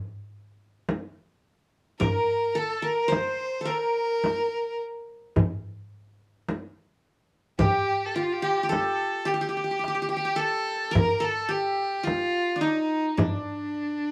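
A straight 10/8 pulse at 107 BPM in eighths opens this melancholic, hypnotic Arabic maqam ensemble piece, cut from a longer work, as a deep, clay-shelled darbuka played with soft hands and a small, up-front frame drum enter at 0.9 s, joined at 2.0 s by a fingerpicked, bright-edged qanun carrying the melody and a focused, boxy single violin bowing a vibrato second line, both sitting up front in a moderately reverberant room where the band plays live together.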